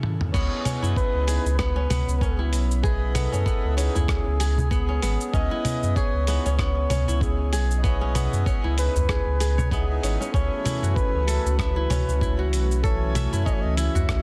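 A dense, heavily limited modern mix with little reverb carries this hypnotic, meditative organic downtempo excerpt at 96 BPM in C# minor, where a crisp, ringing, fingerpicked kora and a gritty sampler-style soul kit of congas, hi-hat, rim click, shaker, toms and crash open with a short drum fill, joined at 0.3 s by a thumpy electronic kick, a round, up-front sub bass, a reedy harmonium breathing in the background and a veiled, bucket-muted trumpet playing a jazz-style solo with vibrato and scooped notes, while a small, saturated udu sounds briefly in the background and a breathy, detuned pad arrives at 10.6 s, shortly after the harmony moves from C#m7 to F#m7.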